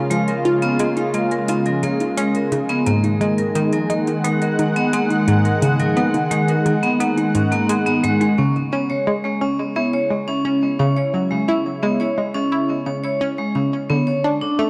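A straight 4/4 pulse carries this mysterious, expansive stretch of sequencer-driven ambient space music, where a thick, detuned unison pad with chorus sustains chords beneath metallic, hard-mallet vibraphone arpeggios with delay and a round, wave-folded analog pluck riff colored by chorus, cassette tape and delay, while dry, overdriven electronic hi-hat and congas tick quietly in the background until 8.3 s, after which the harmony moves to C#m at 8.4 s inside a moderate plate reverb.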